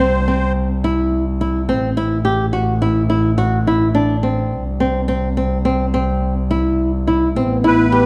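Contemporary chamber music in 5/4 at 106 BPM, hypnotic and pensive, with a fingerpicked flamenco guitar spinning arpeggios throughout while a bowed double bass, earthy with light vibrato, holds the low end in a dark recital-hall space. A reedy, shimmering musette accordion sounds its brief melody at the start and again near 7.7 seconds. A mellow French horn enters at 7.4 seconds with a soft-attacked second line as the harmony moves from C and A minor to Amadd9, before this cut from a longer piece ends.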